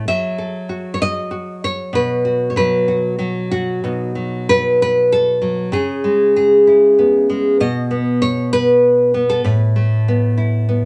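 Wistful and melancholic, this short excerpt from a longer folk piece features a solo nylon-string guitar, fingerpicked in 3/4 at 96 BPM with a rubato feel and tuned slightly below standard pitch. The guitar sounds bright and full-bodied with a deep classical character, sitting up front in light reverb as it moves through F#m7 and B5 before shifting at 3.8 seconds to B, C#m7, a brief stretch outside any chord and a closing Asus2.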